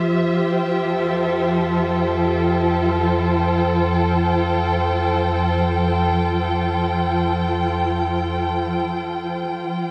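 A muted string section opens this luminous, serene ambient piece in free time and F major, holding veiled, bowed chords with vibrato up front, joined at 1.3 seconds by a deep, rumbling, detuned drone in the bass, all bathed in a lush hall reverb as the harmony moves from Fadd9 to Csus4/F at 9.4 seconds in this fragment of a longer work.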